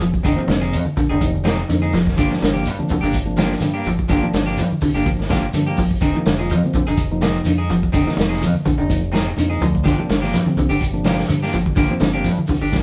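This driving, funky afrobeat excerpt opens with nearly the whole band at once. A clean, hollow-body semi-hollow electric guitar picks low arpeggios, a twangy, slightly broken-up second guitar adds stabs, and a dark, round fingered dub bass anchors the bottom. The vintage acoustic drum kit sits up front, muffled and lo-fi, with a punchy kick, a medium-tuned snare and hi-hat. Ringing low-tuned congas played with soft hands and a grainy shekere stay close and dry in the background. At 0.4 seconds a mellow tine electric piano joins as accompaniment behind them. The groove runs at 125 BPM in 4/4 with a light 16th-note swing in F dorian, moving between Fm7 and Gm7, and sounds like a band playing live in one room with moderate studio reverb and a dull, capped top end.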